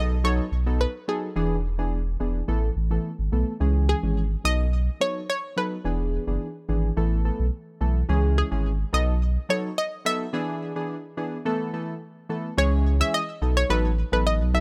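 A dry mix places an up-front analog pluck melody, chorused and round with a sawtooth bite and a noise layer, over chorused analog keys whose pulse- and sawtooth tones glow warm and evolve through a filter sweep. A deep sine-and-triangle sub bass with an added octave sits full and sustained beneath, as this hypnotic, mellow afrobeats passage moves at 107 BPM in a straight 4/4 through a looping B7, E7, Asus2 and C#m progression. All three parts play throughout, with a break from 10.3 to 12.6 seconds before the cut-off ending.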